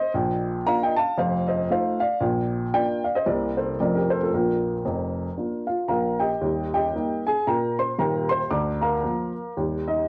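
Swung eighths in 4/4 drive this exuberant, playful stride-piano fragment from a longer jazz piece, where a warm, present baby grand plays solo and up front from 0.0 to 10.1 seconds, spanning from deep bass to high treble, shifting into a new section at 6.4 seconds, and carrying the light small-room reverb and slightly off-standard tuning of a home cassette recording.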